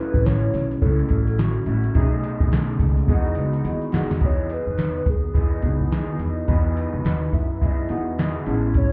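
A lazily swung sixteenth-note groove in 4/4 rides on a soft vintage rhythm box, up front with a deep kick, crisp snare and metallic hats, beside a woody pizzicato upright bass and a grainy tube shaker that is barely audible and drops out at 4.2 seconds. In this hazy, sunny indie and bedroom pop fragment, a hollow, clarinet-like synth lead carries the melody with vibrato, analog chorus and tape echo, while a dark, slightly broken-up electric guitar through a small old amp drifts in pitch under lush chorus, and nostalgic, detuned lo-fi synth keys warble alongside. The drums play a fill at 3.1 seconds and the keys add their own at 7.0 seconds, all heard muffled as if through a wall, with light club reverb.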